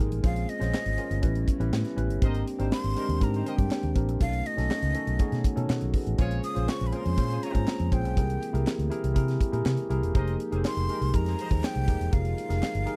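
Opening at once on a mellow, slightly out-of-tune tine electric piano with lush chorus, a shimmering pulse-width pad sitting dark in the background, and a round, foam-muted fingered bass up front, this polished 1980s jazz-funk pop excerpt carries a bittersweet, urban mood in a straight 4/4. A crisp fusion drum kit joins at 0.1 seconds with a high-tuned snare, tight kick and hi-hat, its airy studio-room sound polished and up front. At 0.2 seconds a breathy jazz flute takes the melody with expressive vibrato and lifted highs, floating over lush extended chords such as Bbm9, Abmaj9#11 and C7b13 before settling on Fm11. Group handclaps add a human snap in the background, and from 2.2 seconds a soft-attacked, vintage-toned horn section plays a second line with light vibrato until 11.5 seconds. The recording is dry and intimate, with little reverb, in the manner of a close 1970s-style studio session.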